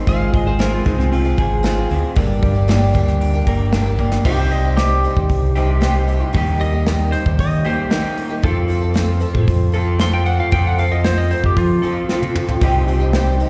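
This folk rock and heartland rock excerpt moves at 115 BPM in a straight 4/4, with a reflective, dusty mood that settles into C dorian from 4.2 s. A woody, boxy twelve-string acoustic guitar with old strings and an octave-doubled shimmer picks the accompaniment under slapback echo, while a dark, slightly broken-up electric guitar through a small old amp plays a compressed, lo-fi riff bathed in lush chorus and slapback echo. An electric slide guitar, played with fingerpicks, carries a second line that becomes a solo from 4.2 s, ranging up to C6. A mellow, reedy electric piano sits in the background through its built-in speakers with slapback echo, a round, up-front fingered bass anchors the low end, and a soft brush kit with a punchy kick and medium-tuned snare plays with fills at 4.0 s and from 12.1 to 12.6 s. At 12.6 s a very quiet, bright tonewheel organ joins with sustained chords, key click and slow rotary speaker as the harmony returns to Cm. 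The sound is that of a live gig heard through the venue's PA, with recital hall reverb around the band.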